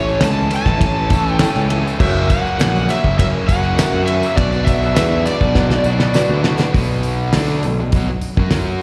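A straight 4/4 pulse at 101 BPM drives this brooding, gritty classic rock passage in B minor, heard live through a venue's PA in a recital-hall reverb: a damped 70s drum kit with a fat snare and tight kick sits up front beside a round fuzz picked electric bass, while two bright, overdriven riffing guitars, one distorted electric and one semi-hollow, both with slapback echo, sit in the background beneath an overdriven slide guitar melody played with fingerpicks. A reedy, worn, slightly out-of-tune electric piano with fast tremolo, a very quiet tonewheel organ holding sustained chords through a slow rotary speaker, and a jingly tambourine fill out the sound until a drum fill at 5.6 seconds, after which the slide, piano, organ and tambourine have dropped out by 6.7 seconds, leaving drums, bass and the two riffing guitars.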